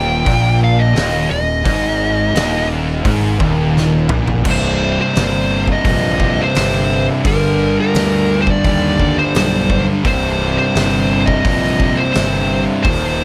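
Stoner and doom metal with a sludgy, ominous mood, cut from a longer piece: a dark, compressed fuzz lead guitar sits up front and solos through the opening 4.5 seconds, while two thick fuzz guitars and a bright, double-tracked tight distorted guitar grind out low riffs in the background. A growly, punchy fuzz bass plays underneath, and an oversized low-tuned drum kit, distant and roomy with dark cymbals, a fat snare and a punchy kick, enters at 0.3 seconds and plays a fill just before the second section begins. The sound is dry, with little reverb, and in the later passage the harmony moves from C minor to G5 and back to C minor.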